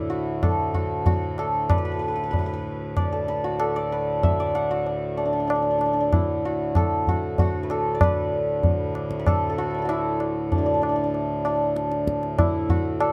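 This Hindustani classical excerpt is built on raga bhupali, with a devotional, serene mood, a straight feel and an unusual five-beat cycle. The santur carries the melody from the opening moment, sitting up front in the mix with a hammered, shimmering, ringing tone that spans D4 to F#5. Underneath, a pedal harmonium holds a low, reedy drone between D2 and A2, its sound mellow and breathing and set further back. The tabla joins at 0.4 s, tuned high and recorded close and dry, each stroke carrying only a short ring. A light reverb lends the acoustic ensemble a gentle sense of space, and the music moves into a new section at 8.0 s before the clip ends at 13.1 s.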